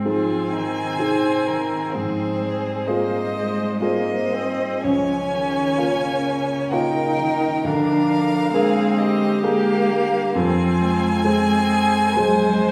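The recording has a reverberant recital-hall sound, heard from further back in the room, with a 1.6 s decay around the ensemble. This serene, warm slow movement for piano quintet is cut from a longer piece. It moves at 56-68 BPM in 3/4 with a rubato feel, tuned to A4 = 444 Hz. All five players sound together for the full 12.7 seconds. One bowed violin carries the melody between C5 and Ab5 with a rich vibrato tone, while the second violin shapes a focused counter-line beneath it. A distant, bowed viola supplies inner accompaniment, and a close, intimate cello plays sul tasto with light vibrato, an airy bow and soft attacks. The baby grand piano sits up front with an open, long-sustaining tone, spanning Db2 to C5 as it accompanies a progression that moves from Ab through Fm/Ab, Bbm7/Db and Bb7/D to rest on Fm.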